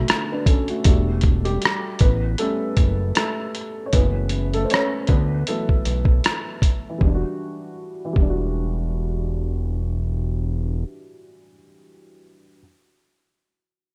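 Lo-fi hip hop with a nostalgic, hazy mood, cut from a longer piece: a soft, felt-muted upright piano with audible action noise and a cassette-tape tint takes a solo under a filter sweep from 0.9 to 7.0 seconds, over a fat, saturated analog bass of detuned sawtooth tone and a muffled, compressed sampler-style drum kit of thumpy kick, hi-hat and rim click that stops at 8.4 seconds, set in a rough home-demo mix with light reverb.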